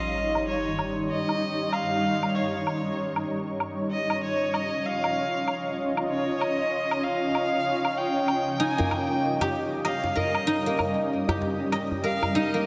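Organic downtempo with an earthy, peaceful mood, cut from a longer piece, where a rich bowed kamancheh with tape echo carries the melody with vibrato and portamento over a blurred, detuned granular cloud pad with sampler grit, a silvery fingerpicked guzheng plays ringing arpeggios that return at 8.6 seconds, an electronic sub drop marks the opening impact, a felt-mallet bronze singing bowl hums very quietly, a filtered woodblock keeps time in the background, and a soft-handed djembe joins at 8.8 seconds, in a dreamy mix soaked in hall reverb.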